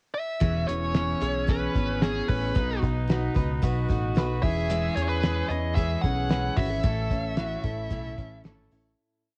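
An up-front, distorted bluesy lead guitar carries a motif-based melody through this breezy, bright jangly indie pop piece. After a brief pickup it is joined by a vibrato-laden trumpet counter-melody, a buzzy combo organ holding close-voiced chords in the background, and a steel-string acoustic guitar strumming eighths. A bright, fingerpicked roll comes from a clean, direct-recorded electric guitar, a round, sliding dub bass plays underneath, and a dry, cloth-damped drum kit with a fat snare and tight kick keeps a brisk backbeat. It all has a home-recorded cassette character before fading out from 6.8 seconds.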